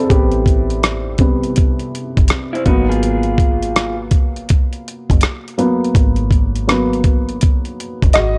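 A dark, woody upright piano, slightly detuned with audible action noise, opens this short, nostalgic and melancholic lo-fi hip hop excerpt, carrying the accompaniment and a solo over swung, dusty sampler-style drums with a thumpy kick, hi-hat and rim click, joined at 0.1 seconds by a round, foam-muted dub bass. From 2.5 to 4.0 seconds a slightly broken-up electric guitar through a small old amp adds a brief picked second line with tape echo, as the harmony moves from Am9 to G#m9. The sound is dry and gritty, with the piano and drums up front.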